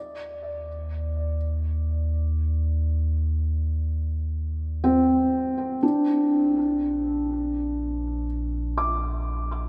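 Serene and warm, this brief ambient fragment sets a felt-muted upright piano, soft and intimate with a thick-felt tone and a touch of tape echo, playing up-front arpeggios over a round, deep analog bass tinged with tube saturation, both bathed in a cathedral reverb as the harmony moves from Cm/Eb to Bb at 5.8 seconds.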